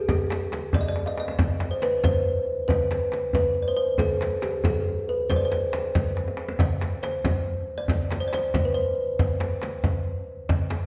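A woody, ringing kalimba opens this short excerpt of a Persian modal ensemble piece, thumb-plucked and up front as it carries the melody in C avaz esfahan. Almost at once a tombak and a frame drum join in, setting a hypnotic, longing 6/8 pulse at 92 BPM with a straight feel. The tombak sounds warm and acoustic, as if heard in a small room, while the frame drum is large, close and dry, its hard hands placed up front. Brief drum fills mark the phrases, one just after the opening and another leading into a second section at 6.6 s. The kalimba's airy tone drifts through a recital hall reverb before the melody stops at 10.0 s, and the two drums carry on a little longer, to 10.8 s.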